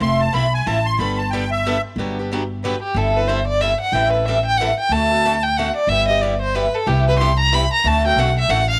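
Jazz manouche in a lively, playful swinging waltz time: a reedy, shimmering musette accordion opens the fragment with a brief solo line that ends at 1.8 seconds, over a bright, boxy picked acoustic guitar and a woody, thumpy pizzicato upright bass on gut strings. At 2.6 seconds a single bowed violin takes the melody up front, its tone warm and expressive with vibrato, soft attacks and gliding portamento. Light reverb gives the small string group a touch of space in this snippet from a longer piece.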